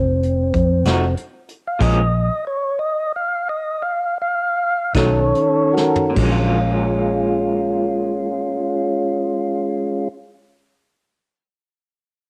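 A clear tonewheel organ with key click and a slow rotary speaker takes the lead from the opening, sustaining chords over a round, foam-muted electric bass in this smoky, mournful slow blues in 12/8 and Bb minor, cut from a longer piece and moving at 47-64 BPM while it slows down until 6.2 seconds. A dark-cymbaled brush kit with a punchy kick plays quietly beneath, and a bright, twangy guitar through a small old amp adds slightly broken-up picked accompaniment with tremolo from 0.9 seconds. The harmony moves through Bbm and B7, and a drum fill at 5.7 seconds leads into a Bbm7 passage, all captured as a lo-fi home cassette recording with light reverb.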